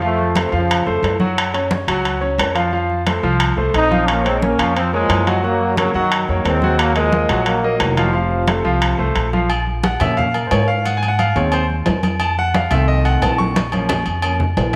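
Salsa with a danceable, fiery drive: this passage from a longer piece sets a clear, intimate grand piano with audible action noise and a dark, woody, thumpy pizzicato upright bass on gut strings over ringing congas and metal-shell timbales with agogo bells, while a loose trombone section with vibrato carries the melody in two phrases before the piano takes a solo from 9.5 s and a drum fill arrives at 13.6 s, inside a moderate echo-chamber reverb.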